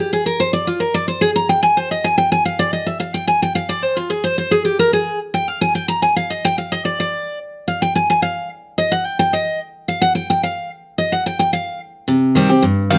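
A picked steel-string acoustic guitar, full-bodied and jumbo in tone, stands up front through the whole of this lonesome, haunting bluegrass fragment, cut from a longer piece. It plays alone from the start until 12.1 seconds, carrying the accompaniment role across a span from G2 to Bb5 with nothing beneath it but open, unharmonized space. As its solo closes, a C minor chord settles in, and at 12.9 seconds a mandolin slips in with a single woody note on F5, its double strings sounding briefly before the excerpt ends. The straight 4/4 feel moves briskly, and close, detailed microphones catch the picking with clarity inside a light reverb.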